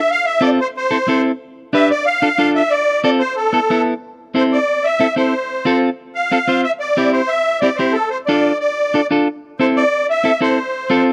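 Close, detailed microphones and a light reverb give this short Latin cut, taken from a longer piece, an intimate, present sound. A musette accordion carries the melody from the start, its reedy, shimmering tone sitting up front with the airy beating of its wet musette tuning. At 0.4 s a semi-hollow electric guitar joins in accompaniment, clean and dark with the picked character of a hollow body, placed just as near as the accordion. The opening passage moves briskly through F, Am, G, Dm and Esus4 before a second section at 4.0 s settles into longer spans on Am, F, C and Dm. Over a straight, steady pulse, the pairing of reedy accordion and shadowed strings feels driving and fiery.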